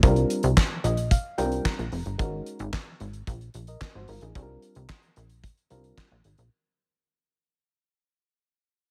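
A small-room ambience surrounds this 6.5-second clip of early-eighties boogie funk, which fades out throughout as a late-night, funky groove in C minor at 111 BPM in straight 4/4. Up front, a dry, polished, damped 70s drum kit with a fat snare, tight kick, hi-hat and handclaps sits in gated reverb beside a punchy, plucky analog bass built from sawtooth, square, sine and ring-modulated tones, wave-folded and shaped by a filter pluck. A mellow FM electric piano with a noise layer plays C9sus4 and Ab9sus4 chords, adds a fill from 0.6 to 2.2 seconds, and stops at 6.1 seconds.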